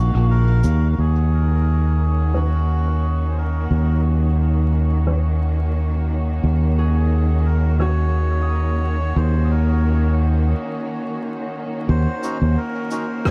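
Dark, crackling vinyl-tinged production frames this deep, spacious ambient dub fragment, where a reedy, breathy melodica melody with dub echo floats over smooth, vibrato-rich bowed chamber strings and a round, up-front fingered electric bass, while a ringing concert harp sits in the background with echoed arpeggios, distant, roomy cabasa and rim click are muffled by a low-pass filter, a second nasal melodica adds echoed stabs from 12.2 seconds, and a punchy, overdriven electronic kick lands at 13.3 seconds.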